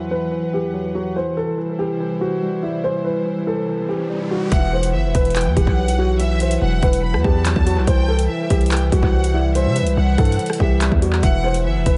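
This ominous drill excerpt opens with a dark, boxy baby grand piano carrying the melody through dub echo, its action noise audible, over a clean tine electric piano played through its built-in speakers and a soft, warbling pad with chorus sitting in the background. The harmony moves between Esus2 and C in a menacing half-time feel. A background riser plays from 3.7 seconds into the drop at 4.5 seconds, where a hard-hitting 808-style bass and an electronic drill kit arrive up front, pairing a hard-clipped kick and metallic hi-hats with handclaps and rim clicks. At the same moment, a distant, lush violin section enters with expressive vibrato, its second line also trailing dub echo. The punchy, sine-based bass dominates the low end, while the echo-heavy mix keeps the top end dark and subdued.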